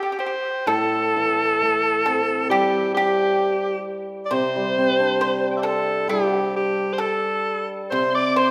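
Chinese traditional chamber music, festive and pastoral, unfolds at a rubato 66 BPM in 2/4 in the G zhi mode, with a bright, punchy alto saxophone carrying the vibrato-laden melody up front in a forceful pop style, a dry, percussive pipa played with fingerpicks adding a second line from the start, a shimmering, ringing hammered dulcimer accompanying from 0.7 seconds, and a boxy, bowed erhu with portamento slipping in high at 7.9 seconds, all set in a moderate concert hall reverb in this short cut from a longer piece.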